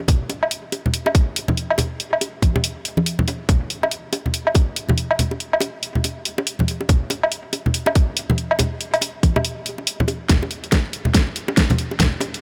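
The recording sits in a light digital ambience with a touch of reverb, and every part is placed up front. This is a meditative, brooding dubstep cut from a longer piece, moving in a half-time 4/4 feel with a loose swing on the sixteenths. A tight, tape-tinged electronic kick, layered and re-recorded in a large room, anchors the groove. Above it, a layered deep house kit brings hi-hat, woodblock and a fat, overdriven snare. Close, dry congas and bongos played with hard hands add an acoustic edge, their hits trailed by dub echo. From 10.3 seconds the piece turns into a build-up with a drum fill that runs to the end.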